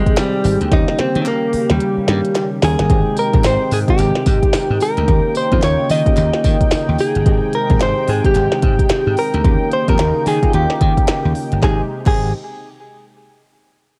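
Flirty and upbeat, this new jack swing R&B groove moves at 110 BPM in Ab major with swung 16ths, cycling between Abmaj7 and Eb7 as a punchy, bright slap bass enters at 0.4 seconds beneath an up-front, clean, compressed electric guitar melody. An electronic drum kit with a deep kick, tiny snare and clicky hats drives the track, opening with a fill from 0.7 to 2.9 seconds, while a very quiet, crisp group handclap adds a live-room touch. Round, mellow electric-piano-like synth keys sit in the background, and a smooth, detuned sawtooth pad with chorus sustains the chords, all carrying the soft grain of a home cassette recording.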